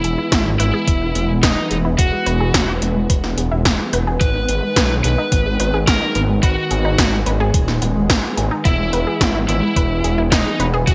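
Nocturnal and moody, this 108 BPM synthwave passage sets an overdriven, picked electric lead guitar with digital delay over a thick, detuned saw bass and a lush, warbling pad that both pump to the sidechain, while a round analog pluck arpeggio with cassette-tape colour runs under a filter sweep, and 80s pad drums with a gated snare and metallic hats are joined by a thumpy electronic kick from 0.3 s, in a bright 1980s-style digital production with plate reverb moving through E and G#m.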